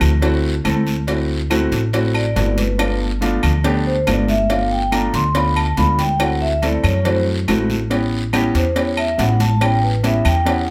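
Lively and sophisticated, this Afro-Cuban jazz excerpt in D mixolydian moves at 141 BPM in a straight 4/4, with a warm, up-front upright piano accompanying a thumpy, gut-strung pizzicato upright bass over percussion of bright, high-tuned congas, ringing agogo bells and timbales and woody claves in the background, joined by a tight cowbell and a raspy guiro, while a metallic vibraphone with medium mallets and the motor off takes the solo from 2.2 s, the whole mix set in light reverb.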